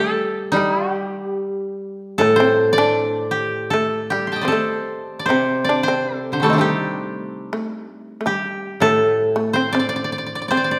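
From the opening moment, a koto melody played with fingerpicks sits up front, its woody, dry tone ranging from C3 high up to C6 in this austere, calm piece of Japanese chamber music. Beneath it, a plectrum-plucked, fretless shamisen carries a second line between G3 and A4 with a buzzing, percussive and powerful attack. A second koto supplies accompaniment in a low register from A2 to G3, its acoustic tone kept somewhat lower in the mix. The three parts play together throughout the 10.8 seconds, moving in a loose, rubato 2/4 feel. A recital hall reverb with a 1.5 s decay surrounds the plucked strings, and the passage is cut from a longer piece.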